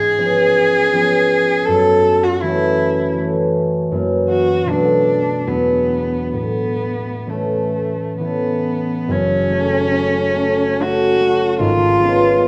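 A moderate recital-hall reverb surrounds this tender romantic duo, a passage cut from a longer classical piece in 3/4 with a flexible rubato pulse between 64 and 81 BPM. Up front, a rich bowed cello carries the melody between A3 and A4 with expressive vibrato, soft attacks and portamento, while a concert harp, thumb-plucked and ringing, supplies warm accompaniment from a deep F#1 up to D4. The harmony moves through seventh and ninth chords to settle on A major at 6.4 seconds, then turns toward F# minor at 9.1 seconds.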